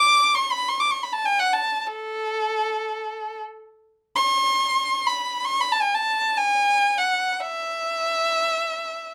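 Stately and warm, this 9.1-second excerpt of an Arabic maqam ensemble piece in free time centres on a lone bowed violin in A maqam rast, tuned to A4 = 441 Hz, playing up front with a smooth, even, nasal, boxy tone and vibrato, set in a moderate studio reverb within a rough home-demo mix.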